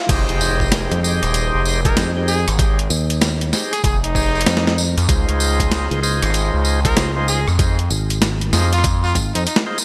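A faint electronic riser and impact open this gritty, swaggering glitch hop excerpt in F minor at 96 BPM with a swung 16th feel, as an overdriven tonewheel organ with key click, slow rotary speaker and sidechain pumping stabs over a nasal, wave-folded synth bass, a thumpy overdriven electronic kick, a compressed sampler-style boom bap kit with gated reverb, and a jingly vintage tambourine, with a growly fingered electric bass arriving at 0.9 seconds and a clear, close-miked jazz trumpet with light vibrato and delay taking the solo from 1.8 seconds over Fm9 and Dbmaj7 in a bright 1980s-style digital mix.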